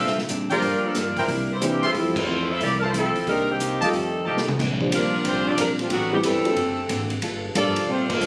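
Opening on a clear, close-miked saxophone section carrying the melody over a dark hollow-body jazz guitar and growly pizzicato upright bass, this joyful, brassy big band swing excerpt at 182 BPM in F major brings in a drum kit with a boomy kick at 0.1 s, a mellow upright piano and up-front trumpet section stabs from 0.5 s, then a trombone section second line in the background from 3.8 s, and a drum fill leads into Bb major at 4.6 s, heard through moderate large-room reverb with a compressed, phone-recorded sound.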